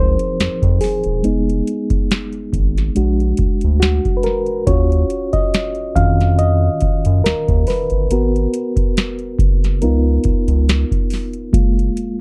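A slow 70 BPM groove in 4/4 with a light 16th-note swing sets up this late-night, sultry neo-soul R&B excerpt, and a booming analog drum machine enters at 0.2 s with a deep kick, crisp snare and metallic hats that sound tape-warmed and re-recorded in a large room. Beneath it, a round, nasal analog bass with a filter pluck and fast attack holds the low end, while a mellow, reedy electric piano, heard through its built-in speakers, takes a solo throughout with harmonic tremolo over chords moving from Dbmaj9 through Ebm9 and Abm9 to Gbmaj9. The sound is dry and close in a 1970s studio style, with drums, bass and keys all up front.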